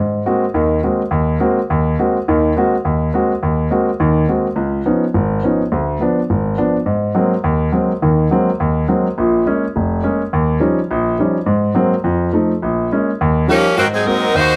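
Brassy and swinging, this up-tempo jazz passage at 209 BPM in Ab major moves with a swung eighth-note feel over changes built on Ab9, Db9, Bbm7 and Eb9. An intimate, warm concert grand piano carries the accompaniment from the start, up front with deep bass and audible action noise, until an edgy, close-miked saxophone section with vibrato arrives at 13.5 s to take the melody just before the cut at 14.6 s. A moderate club reverb places both in a club setting.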